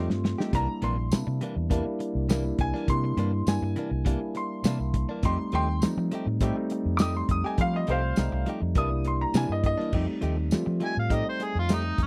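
A straight-eighth soul blues groove in 4/4 at 102 BPM opens with a short drum fill from a warm, tight soul kit with dark cymbals and tambourine, over a round, foam-muted fingered bass. A bright tine electric piano with phaser and clean, compressed direct-recorded guitar stabs carry the accompaniment while a woody, slightly detuned upright piano takes a solo until 9.9 s, moving between F9 and C9. At 10.9 s a gritty, overdriven harmonica enters with light vibrato, tongue slaps and scooped notes, keeping the laid-back, soulful mood in a dry, close 1970s-style studio sound.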